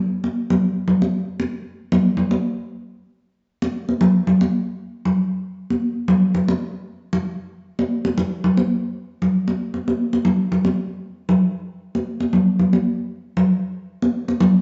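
A stone room lends this recording a wet, echoing reverb that lingers for over a second, and the top end is rolled off so the sound feels dusky and vintage, as if captured live in a single room. It is a bouncy, carefree calypso fragment in 4/4 with a straight feel, cut from a longer piece. The only part is a set of acoustic congas, which enters at 0.2 seconds and carries on until 14.5 seconds. Tuned high with a thin skin, the drums sound bright and are struck with hard hands, sitting up front in the mix. After a short opening passage, a new section begins at 2.2 seconds and runs to the end.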